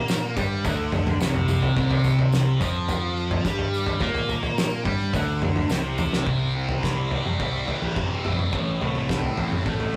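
Psychedelic rock at 107 BPM in a straight 4/4, trippy and hazy, cut from a longer piece, with a bright, double-tracked fuzz guitar riff carrying distortion and phaser up front over an overdriven, picked fuzz bass. A cloth-damped, thuddy acoustic kit with a fat snare, tight kick and rolled-off top sits forward, while a jingly tambourine hangs in the background until 6.2 s. A drum fill at 5.7 s leads the power-chord riff into chords moving from C to Am, all caught in a rough rehearsal-room recording with warm saturation and moderate studio reverb.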